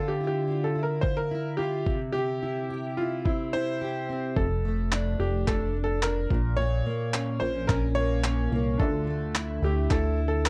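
A dry, close 1970s-style studio sound frames this carefree, heartfelt acoustic pop excerpt, where a clear, woody upright piano carries the melody with audible action noise over a double-tracked, full-bodied fingerpicked steel-string acoustic guitar; a gritty, compressed soul sampler-style kit with handclaps and a thumpy kick joins at 1.0 s, a glossy, saturated chorused synth bass arrives at 4.4 s, and a soft felt-muted upright piano slips into the background at 8.8 s.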